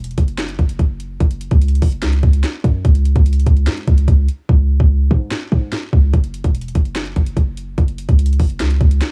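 Melancholic and eerie, this short hip hop and trap fragment is cut from a longer piece and moves at 146 BPM in 4/4 with a half-time feel, tuned slightly flat to A4 = 439 Hz. A deep, boomy, warm 808-style bass sits up front, its sine tone carrying a noise layer, a fast attack and a mellow, decaying tail across a range from E1 to G#2. An electronic, produced trap drum kit shares the foreground, pairing a hard-clipped kick with a sharp snare and metallic hi-hats. The hi-hats drop out between 4.5 and 6.1 seconds, leaving kick, snare and bass to carry the groove before they return. The room is dry, with little reverb, and the fragment was captured as a home recording on cassette.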